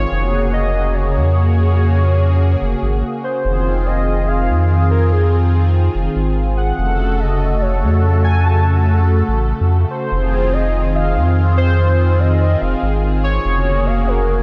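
This is an IDM excerpt built on a swung 4/4 groove, the sixteenths pushed slightly off the grid, with a brief break between 3.0 and 3.4 seconds. The mood is eerie and glitchy, set in a Phrygian mode over a chord cycle that moves between Gbadd9/F, Fm7 and Gbm/F. A deep, round sine sub bass sits up front throughout, its fast attack giving the low end a firm footing. Above it, a detuned sawtooth analog pad holds smooth, sustained chords with a soft attack, a moving notch and chorus. The velvety lead carries the melody within a range of Ab4 to A5, its wave-folded sawtooth and triangle tone thickened by unison, vibrato, chorus and analog delay. A lush hall reverb with a 2.7-second tail soaks the whole mix into a dreamy haze.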